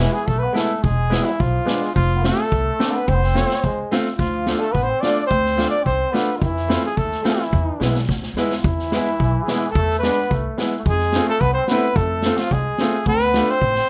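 A straight 2/4 pulse carries this soulful, bittersweet klezmer excerpt, in which a breathy, whispered cornet sings the melody up front with vibrato and plate reverb, a nasal, distant trombone in straight mute traces a second line, a bright, woody upright piano accompanies, a pizzicato upright bass anchors the bottom, and a street-band drum kit with a high-tuned snare and boomy kick enters at 0.3 s and plays a fill at 8.1 s, set in a modest small-room ambience.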